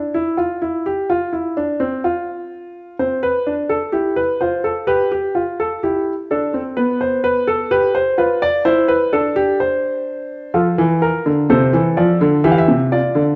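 Stately and elegant, this short fragment of a baroque-style three-part fugue unfolds at 63 BPM in a straight 4/4, with a solo baby grand piano spanning C3 to F5. The piano sits up front with a natural, warm tone and short sustain, set in a moderate recital-hall reverb within a dark production. After an unaccompanied opening, the harmony settles on C at 3.0 seconds and moves through G7/B and F before returning to C at 12.4 seconds.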